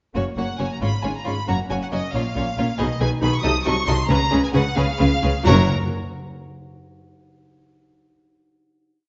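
A cheerful, graceful classical-period movement for symphony orchestra in a straight 6/8, this short complete piece opens with the viola section, rich and lush, playing repeated notes and sustained chords. A moment later the first violins take the melody with a clear, smooth vibrato. The second violins fill in repeated notes and held chords beneath them, while the cellos sit in the background with repeated and sustained bass notes, doubled by the double basses. The harmony moves through a brief, graceful progression that passes a diminished chord. At 4.1 s the timpani enter in the background, their soft mallets giving round single strokes on bass notes. A final chord arrives at 5.5 s, carried by the reverberant air of a recital hall.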